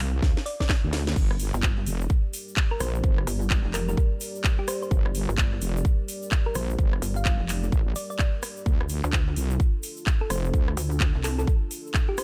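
A heavy, saturated wobble bass opens this swaggering, gritty bass house excerpt at 128 BPM in G minor, soon joined by a punchy electronic kick and a tape-toned house kit with cracking snare and metallic hats that starts on a drum fill, then a round, tine-like thumb-piano-style synth pluck with phaser and delay, a deep, moody analog pad and a grainy egg shaker in the background, and a pulsing, detuned pluck wobble bass from 1.5 seconds, both basses and the pad pumping under sidechain in a dry, up-front mix whose harmony moves from a G minor chord to D minor.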